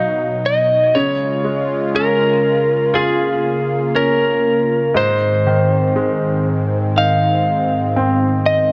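A slow, emotional and hopeful pop fragment in Db major at 60 BPM features a lightly driven lead guitar, dark and slightly broken-up with tape echo, carrying the melody up front over a bright, polished concert grand piano with deep bass and short sustain. A smooth, detuned sawtooth analog pad with chorus and a slow attack holds vintage, warbling chords up front alongside them, moving from Cb through Db at 0.9 seconds to Ab at 5.0 seconds. Light reverb and small room ambience give the mix an echo-heavy feel.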